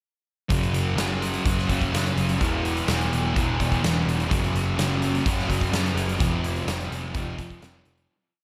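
A straight 4/4 pulse at 126 BPM drives this short, blissful and wistful piece of shoegaze and dream pop, tuned slightly flat to A4 = 436 Hz, with a huge arena drum kit of punchy kick, medium-tuned snare and hi-hat playing a natural pop groove alongside a foam-muted, round vintage electric bass pushing driving eighth notes. Up front, a thick, double-tracked fuzz guitar strums dark power chords through distortion and lush chorus, dipping with the whammy bar over a progression that moves from Gb5 to E5, back to Gb5, then F5. The dreamy mix is soaked in a huge ambient reverb, and everything fades out from 6.2 seconds to the close at 8.1 seconds.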